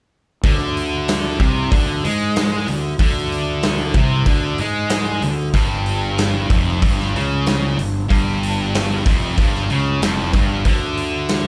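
A live-in-one-room sound with light reverb frames this swaggering, gritty blues rock and southern rock power trio excerpt at 94 BPM in straight 4/4, where a thick, double-tracked fuzz guitar riff sits up front between F2 and G#3, a growly overdriven fingered bass runs beneath it, and a punchy, natural big-room drum kit of kick, snare and hi-hat drives everything from Csus2 to Fsus2 at 5.5 seconds before the harmony drops away to N.C. at 10.7 seconds.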